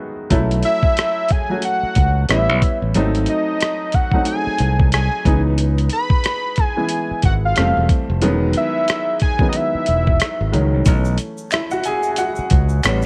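Smooth and soulful, this short R&B and neo-soul excerpt moves with a swung sixteenth-note feel in 4/4. A clear grand piano with short sustain opens alone before a bright, punchy fingered electric bass and a dusty, sampler-style drum kit enter at 0.3 seconds, the kit gritty and compressed, with a thumpy kick, rim click and hi-hat carrying a tape-warm tone. Over them a fat analog lead sings the melody from 0.6 to 10.5 seconds, its detuned sawtooth and square-wave voice nasal yet mellow, thickened by a sub octave, chorus and vibrato, with a filter sweep and sustained notes. The harmony drifts through lush extended chords such as A9, C#m9, Fmaj9 and Emaj9 before returning to B7sus4. At 10.9 seconds the piano is featured in a closing passage, joined by a faint acoustic egg shaker, handclaps and finger snaps, all set in a light, small-room reverb.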